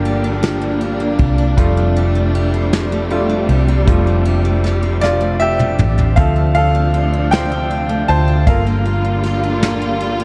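A bright upright piano carries this romantic, heartfelt six-eight pop ballad excerpt, its woody tone and audible action noise sounding intimate and present as it plays a solo over chords moving from Gm7 through Fadd9 and Dm7. Beneath it, a lush studio string section holds distant bowed chords with vibrato and portamento, a picked steel-string acoustic guitar adds concert-toned arpeggios, and a hollow-body electric bass sits round and up front. A soft brush drum kit with a punchy kick and rolled-off top plays throughout, adding a fill from 5.0 to 6.2 seconds, all within a dark production with light reverb.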